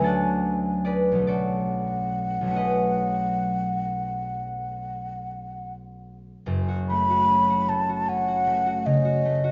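An airy, hollow concert flute leads this wistful, mysterious impressionist duo, singing its melody up front with vibrato and tongued notes that stay between D#5 and B5. Beneath it, a fingerpicked concert harp spreads a ringing, mellow accompaniment across a range from F#1 to E6, sitting close to the flute in level. The music is in F# minor, tuned to A4 = 437 Hz, and moves in a slow, rubato 12/8 at about 43-52 BPM counted in dotted quarters. Dmaj9 and B9 harmonies color the opening, and at 6.5 seconds a new passage begins on F#m6, lasting until the close at 9.5 seconds. A wet scoring-stage reverb with a 1.6-second decay surrounds the pair, and the sound holds nothing above 7.5 kHz, lending the excerpt a soft, veiled glow.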